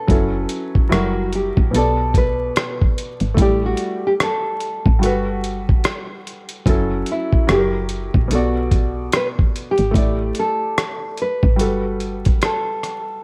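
A reflective, melancholic lo-fi hip hop excerpt in B minor at 73 BPM, swung on the sixteenths and cut from a longer piece, where a full-bodied nylon-string guitar carries the fingerpicked melody with audible finger squeak through a low-pass filter, over a felt-muted upright piano whose intimate, cassette-tinged chords reveal audible action noise. A woody, round FM bass sits low beneath them, while a gritty, compressed sampler-style drum kit with a thumpy kick, hi-hat and rim click stands up front, re-recorded in a large room. The harmony cycles F#m7, F#7b9, Bm7, A7sus4 and Gmaj9 twice in a dry mix dusted with vinyl crackle.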